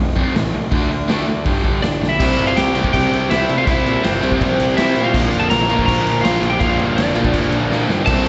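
Rebellious and energetic, this punk rock excerpt opens with an overdriven semi-hollow guitar and a lo-fi garage guitar, both picked riffs with slapback echo sitting in the background over a round, fuzzy picked bass, as a saturated, punchy drum kit crashes in up front at 0.2 seconds. A twangy, compressed lead guitar takes the melody from 1.8 seconds, and a very quiet, double-tracked fuzz guitar riff joins at 2.2 seconds after a drum fill. The whole thing sounds like a live gig heard through the venue's PA, with recital hall reverb and a dulled top end.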